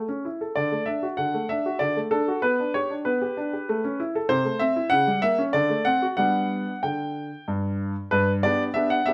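In a straight 3/4 at 96 BPM, this short classical-period piano sonatina moves with a graceful, elegant poise. A solo baby grand piano carries everything, spanning G2 to G5 with a clear, natural tone, long sustain and an up-front presence, set in light reverb. The harmony opens in D major, moving from A to D and on through G/B and A. At 4.3 s it turns toward G major by way of Am/C, C#dim7 and D7 before settling on G. A brief new passage begins at 8.1 s, and the fragment, cut from a longer piece, ends at 9.1 s.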